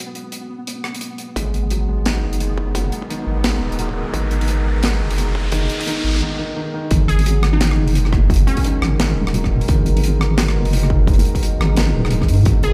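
A deep, moody ambient pad under a filter sweep and a pulsing gated texture opens this dark, tense half-time drum and bass excerpt in G# minor at 173 BPM, joined at 0.2 seconds by an airy acoustic kit, before a felt-muted upright piano playing soft, boxy arpeggios through digital delay, an up-front wobbling bass and a distorted electronic kick drive the build-up from 1.4 seconds, an electronic riser sounds until the break, and a crystalline wavetable pluck carries the melody into the drop at 6.9 seconds, all heard in a large reverberant room.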